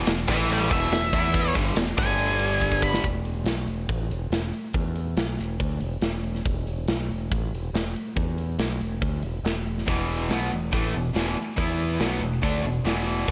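A moderate studio room with a moderate reverb frames this recording, the acoustic drum kit sounding big and punchy but rolled-off at the top. It is a sunny, driving classic rock passage at 141 BPM in a straight 4/4, cut from a longer piece. It opens on a short lead guitar solo: a dark octave-fuzz guitar with wah, distortion and slapback echo sits up front over chords moving through A5, E5 and G5. Two bright, picked rhythm guitars carry the riff beneath it, one with overdrive and the other with spring reverb; they stop at 3.0 seconds and return at 9.9 seconds. Throughout, a growling fingered bass, overdriven and direct-amped, holds the low end, while the kit drives on hi-hat, kick, snare and ride, with a drum fill closing the solo just before the music moves into its second section.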